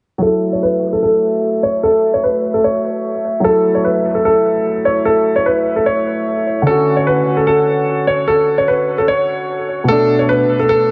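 Eerie and menacing, this half-time hip hop excerpt in F# minor moves at 149 BPM, with a dark grand piano carrying an up-front melody through mellow, vintage tones of short sustain while a second piano part supplies accompaniment, both softened by low-pass filtering and analog delay. A glassy, ethereal glass harmonica holds slow-attack sustained chords with a mid-forward presence, drifting from F#m7 to Dmaj7 and then Bm7 at 9.9 seconds. A filter sweep runs throughout, and a moderate spring reverb with an echo-heavy mix keeps the top end dim and murky.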